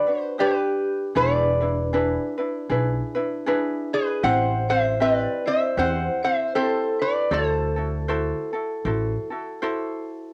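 A lazy swung 4/4 feel carries this languid, relaxed Hawaiian excerpt, where a nasal, metallic lap resonator guitar played with slide and fingerpicks sings the melody up front through a cassette tape colour. A bright, ringing vibraphone with medium hard mallets and fast motor vibrato hums a second line in the background, while a light, fingerpicked ukulele picks through the Gmaj7, E7, Am9 and D9 changes. A woody, thumpy pizzicato upright bass on gut strings enters at 1.2 s, and the whole excerpt sits in a moderate studio ambience with the soft intimacy of a home cassette recording.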